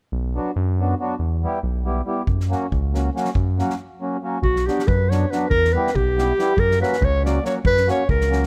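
Fiery and restless, this excerpt of Balkan wedding-band folk in 5/8 opens on a round, deep bass up front with a reedy, dark accordion beneath it, adds a natural-sounding drum kit with punchy kick and fat snare at 2.3 seconds, and after a short break brings in a soft-attacked, classical-style clarinet carrying the solo melody up front at 4.4 seconds, all captured in a dry, close and detailed sound.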